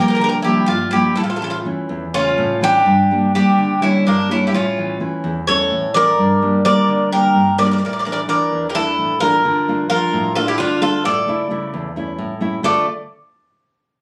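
Brooding and moody, this short excerpt from a longer Greek folk piece for bouzouki band moves in 7/8 in D harmonic minor, with the tempo speeding up from 246 to 268 BPM in eighths, and the harmony circling between Gm and A before settling on Dm at 12.6 seconds. Up front, a metallic, picked bouzouki with doubled, partly octave-strung courses carries the melody while a second bouzouki plays a lower supporting line, and a full-bodied, fingerpicked nylon-string guitar, also up front, supplies deep classical accompaniment. The phone-in-the-room recording has moderate studio reverb and compression.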